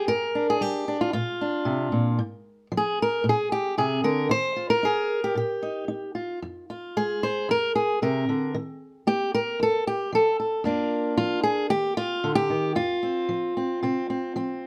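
Set in light reverb, this wistful, intimate folk fragment, cut from a longer piece, features a solo fingerpicked steel-string acoustic guitar, dark-toned and up front with fresh strings, moving at a straight 114 BPM in 4/4 through F dorian harmonies such as Ebadd9, Bbadd9/F and Ebmaj9 before settling on F5 at 12.8 seconds.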